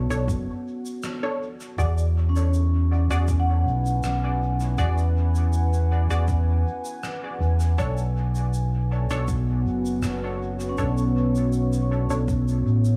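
A straight 4/4 ambient dub groove sets a peaceful, spacious mood: a deep electronic kick sits in the background beneath a dub-echoed shaker and rim click, while an overdriven, round and punchy fingered electric bass sits up front. A dark, detuned sawtooth pad holds sustained chords through chorus and reverb, and muted filtered chord stabs trail dub echo. The harmony moves from Bm9 to E7 and back to Bm9, and at 2.3 seconds a ringing vintage vibraphone with medium hard mallets joins with echoing arpeggios in this echo-heavy, small-room fragment of a longer piece.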